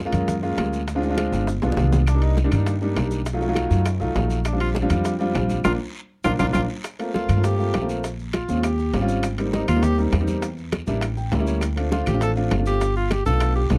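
A woody pizzicato upright bass sits up front and opens this sophisticated, danceable Afro-Cuban jazz excerpt at a brisk 201 BPM in a straight 4/4. An intimate vintage concert grand piano with audible action noise joins at once, while thick-skinned congas, ringing metal-shell timbales, tight high-tuned bongos, a raspy guiro and grainy saturated maracas keep a close, dry pulse in the background, and very quiet claves add their click. A breathy tenor saxophone with subtone and vibrato slips in a brief phrase at 2.1 s, then takes the solo line in earnest from 4.5 s. A drum fill and band accent push the harmony from B-flat major into G minor at 6.8 s, and a piano fill at 11.0 s threads through the lush extended chords under dark, lightly reverberant production.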